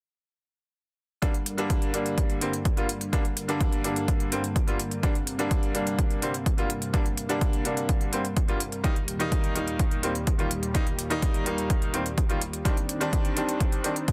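A bright concert grand piano sits up front in this emotional, euphoric stretch of festival progressive house, its worn, brilliant tone carrying accompaniment chords between D3 and F4 from 1.2 to 13.9 seconds, colored by dub echo and sidechain pumping. Beneath it, a lush unison pad built from detuned sawtooth and square waves holds thick, full-bodied sustained chords with a slow attack and long release, treated with chorus and sidechain pumping, while a filter sweep moves across an analog synth pad throughout. A punchy electronic kick drives the 126 BPM straight 4/4 pulse with crisp hi-hats alongside, both layered and carrying the character of a small room. The harmony in G minor moves from Gm to Eb at 8.8 seconds and on to Cmadd9 at 12.7 seconds. Light reverb and digital ambience frame a dense, heavily limited modern master, and the passage is cut from a longer piece.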